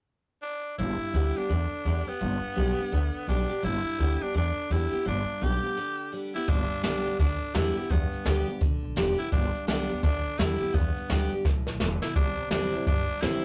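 A raspy tenor saxophone opens this rollicking, retro rockabilly excerpt at 0.4 seconds, and picked steel-string acoustic guitar and upright bass join at 0.8 seconds on a G chord. The tempo is 169 BPM in 4/4 with a swung eighth-note feel, in G major. The saxophone carries the solo melody with an edgy, gritty bite, vibrato and a punchy, present pop-style tone, while the bright, full-bodied dreadnought guitar supplies picked accompaniment. The pizzicato bass, woody and thumpy on gut strings, sits up front beneath them. After a break, a jazz brush drum kit enters at 6.5 seconds with a boomy kick, a medium-tuned snare, dark cymbals and a drum fill before the harmony moves to C at 12.2 seconds. Light reverb and tube saturation give the whole a rough rehearsal-room character.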